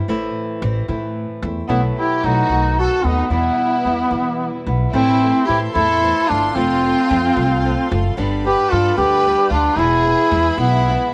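A light reverb and small room ambience frame this passionate, dramatic excerpt of mariachi-flavored Mexican folk music, moving at 74 BPM in a straight 6/8 and shifting from E minor to A minor at 4.9 seconds. A fingerpicked nylon-string guitar with fresh strings provides a small, acoustic accompaniment from the start, while an upright bass with gut strings plays pizzicato, sitting thumpy and woody up front. At 1.7 seconds a duduk takes the solo melody, its folk-style vibrato and scooped notes sounding distant and roomy yet placed up front, joined by a lush, symphonic violin section carrying a smooth, even second line. From 4.9 seconds a dark studio violin section adds floating sustained chords, played sul tasto with a soft attack and a pure, close tone. The harmony moves through Am, B7sus4, B7 and Em, then Am, F and G before landing on E.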